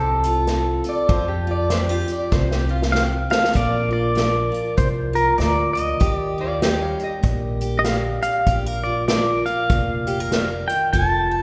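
Lightly swung in 4/4, this easygoing, nostalgic honky-tonk and classic country fragment sets a distant, roomy acoustic drum kit played with bundle sticks, with a fill from 2.3 seconds, under a woody, growly pizzicato upright bass and a bright picked steel-string acoustic guitar, while an up-front, clean pedal steel guitar carries the melody with fingerpicks, slide and volume swells, joined from 0.9 to 7.7 seconds by a metallic, nasal lap resonator guitar on a second slide line, the whole group sitting in a wet concert-hall reverb.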